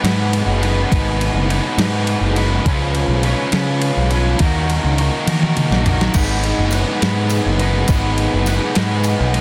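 From the first moment, two overdriven electric guitars play a jangly, wistful indie rock riff in a straight 6/8: one is biting and up front, the other raw and garage-toned with an ensemble chorus. Beneath them, a fuzz-laden picked electric bass, also overdriven and up front, carries the low end with a warm, direct and amped tone. A crisp 8-bit digital drum machine adds a tape-warm, sampler-style pulse with a thumpy kick, medium-tuned snare, crash, ride and toms, and it plays a fill between 5.3 and 6.1 seconds. The harmony moves from G#m7 through C#7 and D#m and returns to G#m7 at 6.1 seconds, where a jingly tambourine joins, close and dry in the background. The sound has little reverb and a dense, heavily limited modern master, and the passage is cut from a longer piece.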